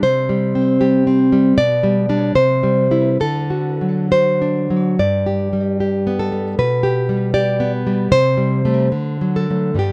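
A fingerpicked nylon-string guitar plays alone and up front for the full 9.9 seconds: a romantic, sunny classical solo in G major, in 2/4 at a rubato 66-80 BPM, tuned to A4 = 441 Hz. Its dark, warm tone spans G2 to D5 and moves through chords such as C, D, G and Am7/C. Light reverb gives the guitar a gentle sense of space in this short cut from a longer piece.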